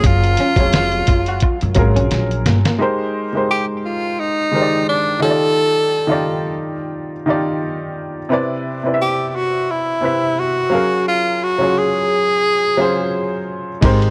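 R&B and neo-soul at 87 BPM with a lightly swung 16th feel, this soulful excerpt sets a breathy, close-miked tenor saxophone melody, rich in vibrato and subtone, over an intimate baby grand piano with audible action noise, moving through major-ninth chords. A woody pizzicato upright bass plays until 2.6 seconds, and a gritty sampler-style drum kit with a thumpy kick and fat snare plays a fill into 2.8 seconds; both then drop away and return at 13.8 seconds. Meanwhile, a slightly broken-up electric guitar with spring reverb sits in the background during the opening seconds, and the recording carries light reverb and the worn, warbling pitch drift of old cassette tape.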